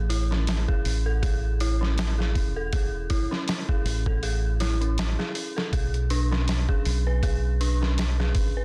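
A dense, heavily limited mix with little room sound carries this brooding, dark trip hop fragment, cut from a longer piece, at 80 BPM with a swung sixteenth feel. Up front, a gritty, pitched-down sampler-style drum kit with a thumpy kick, medium-tuned snare and hi-hat sits in studio reverb, beside a round, deep dub fingered electric bass in a low register. An eerie, inharmonic FM synth bell plays detuned arpeggios through chorus and delay, moving from Amaj7 to Bm69 at 5.7 seconds.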